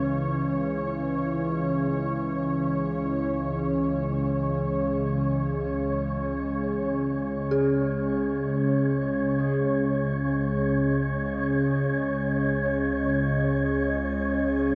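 Desolate and unsettling, this dark ambient drone, cut from a longer piece, floats in free time as an organ-like, warbling drone and a sweeping, ring-modulated resonant pad sit up front, while an eerie, inharmonic detuned synth bell plays mellow arpeggios through phaser and tape echo and an airy, breathy wind-like noise texture hovers on C#5, all bathed in a wet cathedral reverb.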